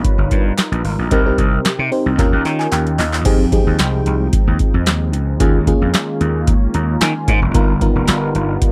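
A straight 4/4 groove at 112 BPM drives this slick, funky early-eighties boogie funk in F minor, built on a booming analog drum machine with a deep kick, crisp snare, metallic hats, handclaps and crash, joined at 0.2 seconds by a gritty, growly slap bass with overdrive, both sitting up front, while a very quiet group handclap adds a human touch from 0.6 seconds. A mellow FM electric piano with phaser and a smooth, detuned sawtooth pad with chorus and phaser supply the harmony, moving from G7alt through Cm7 and Eb7 into Fm9 and Eb9sus4. A drum fill and an electric piano fill at 2.2 seconds lead into the second section, and the piano fills again near 6.5 seconds in this dry, close-miked cut from a longer piece.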